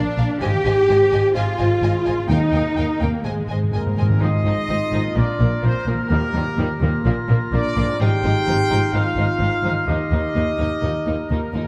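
A straight 4/4 pulse drives this triumphant, adventurous slice of heroic film score, where lush bowed violins carry the vibrato-rich melody over a second violin line, very quiet violas, a dark French horn section holding sustained chords, ringing fingerpicked harp arpeggios, and woody cellos and double basses anchoring the bass. Round, soft-mallet timpani enter at 2.3 seconds and begin a fill at 3.3 seconds, and the trumpet section's distant, roomy stabs arrive during it at 3.7 seconds. At 4.2 seconds a clear clarinet, a punchy oboe and a hollow, close-miked flute add their own lines, all set in the moderate reverb of a scoring stage.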